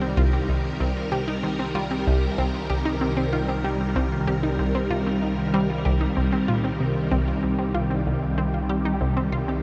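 Ambient, sequencer-driven space music in C minor at 95 BPM, cosmic and expansive, where a swirling, up-front phased string machine holds sustained Cm chords under lush, detuned unison pluck arpeggios wrapped in delay and shimmer reverb, while a round, nasal analog pluck riff with chorus, phaser and delay enters at 0.2 seconds, all bathed in a huge, dark ambient reverb across this short fragment of a longer piece.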